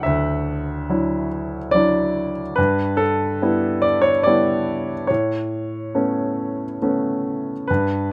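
A clear, intimate grand piano plays alone from the first moment in this calm, lyrical classical excerpt in 3/4, moving freely in rubato through Dadd9, G6 and Aadd9 harmonies across a range from D2 to G5, heard close and up front with natural action noise and very little reverb until it breaks off at 8.1 seconds.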